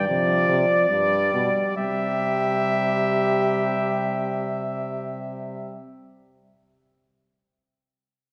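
A wet concert-hall reverb surrounds this short cut from a serious, driving classical canzona for brass ensemble, written in an imitative style at 66 BPM in 3/4 and slowing over its first 1.8 seconds. An up-front, close-miked trumpet carries the melody with a soft attack. A clear, vintage-toned flugelhorn sings a second line, the trombone adds punchy, smooth-topped accompaniment with light vibrato from 0.1 seconds, and a warm euphonium holds the bass, all sounding until 5.8 seconds as the harmony moves from a rootless Gsus4 through G to C.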